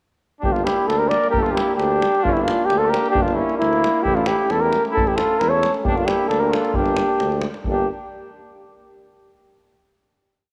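At 0.4 s a complete Balkan brass band enters together in a bittersweet yet fiery 2/4 at 133 BPM in G Dorian sharp 4, with a mellow, up-front flugelhorn carrying a motif-based melody built in sentence-like phrases while a distant trumpet with light vibrato and slapback echo shadows it mostly in thirds. Underneath, a very quiet euphonium and a soft-attacked, close-miked trombone hold chord tones, a clear, punchy tuba with a vintage tinge plays root-and-fifth bass on the main beats, and a deep davul drives a two-stick pattern in a live room. The harmony moves from G minor to A at 4.1 s and back to G minor at 5.9 s before a final chord at 7.7 s, with the plate reverb giving the short piece a roomy glow.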